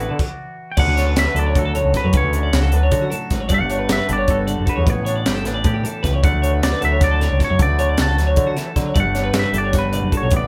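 A bright, live-in-one-room sound with moderate reverb frames this brief cut from a longer math rock and midwest emo piece, wistful and sunny, in 7/8 at 308 BPM counted in eighths, in D major. A twangy electric guitar carries the melody through harmonic tremolo while a second twangy guitar comps low, a clean twelve-string jangles arpeggios, and a growling overdriven bass sits up front beside a gritty, saturated fusion kit with punchy kick, high-tuned snare and bright cymbals. After a sudden stop from 0.2 to 0.8 s, the band moves through Dmaj7, Gmaj9 and A9sus4.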